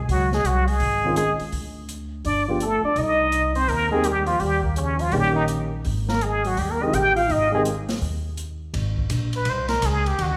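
A woody, growly upright bass opens this swinging small-group jazz excerpt, plucked on steel strings and joined almost at once by a plunger-muted trumpet, a mellow trombone and an open drum kit. The trumpet sits up front with a brilliant, punchy, forceful wah-wah tone and vibrato, while the close-miked trombone carries a second line with light vibrato. A dark baby grand piano comes in at 1.0 seconds with mellow accompaniment, and the airy, polished kit adds dark cymbals, a medium-tuned snare and a boomy kick beneath the horns. The piano and trombone drop out before 8 seconds, and at 8.7 seconds the muted trumpet takes a solo over bass and drums. The whole group sounds warm and swinging, bathed in the lingering reverb of a church or concert hall.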